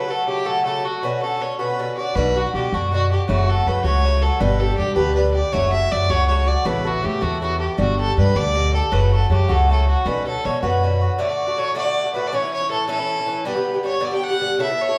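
Dark yet spirited, this lively Celtic folk piece in 6/8 sets a nasal, reedy, bowed fiddle melody over the metallic, picked double strings of an Irish bouzouki, while a woody, thumpy pizzicato upright bass joins at 2.2 seconds and stops at 11.1, the players heard live together in one stone room with a wet reverb.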